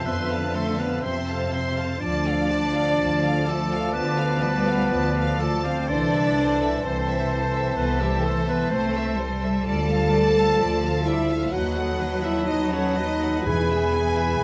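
Classical orchestral music, melancholic and solemn, moves with a rubato feel in this short passage cut from a longer piece. A clear violin section carries the vibrato-rich melody over a second line shared by a lush background violin section, an airy silver flute, a distant, roomy clarinet and a smooth-topped oboe, while a dark bassoon and a focused viola section fill the accompaniment, a mellow French horn section holds tight sustained chords, and a warm cello section joins a woody, up-front double bass section on the bass. Very quiet timpani struck with hard mallets enter only at 13.5 s as the harmony settles on E, and the ensemble sits in a moderate recital hall reverb with a faint mains hum.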